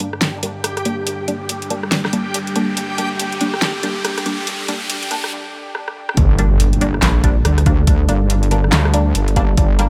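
Deep dubstep in G minor at 141 BPM, this dark, brooding clip moves with a swung, half-time feel and sits on a single G minor chord. It opens as a build-up, with a deep, moody pad held in the background under a filter sweep, while a muted dub chord stab, detuned and plucky with phaser and dub echo, is swept the same way. A reversed, dreamy swell of granular texture glimmers above until 5.3 seconds, as an electronic riser climbs and the overdriven deep house kit's fat snare, metallic hats, claps and rim clicks stay up front, closing the build with a short break and drum fill. At 6.2 seconds the drop lands on an impact, bringing in a punchy, overdriven electronic kick and a heavy, saturated wobble bass, detuned and compressed with chorus, pushed up front. The mix is dry and high-passed, leaving the low wobble and kick to carry the weight against the hazy upper layers.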